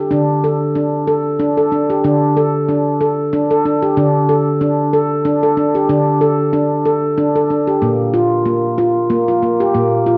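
A solo handpan of nitrided steel rings out up front, mellow and soft under the fingertips, in this gentle, meditative world piece in D minor at 94 BPM in 3/4 with a light 16th-note swing. Its tone is band-limited and vintage, bathed in a wet echo-chamber reverb and carried on worn cassette tape whose warbly pitch drift lends the 10.2-second fragment of a longer piece a hazy, aged character.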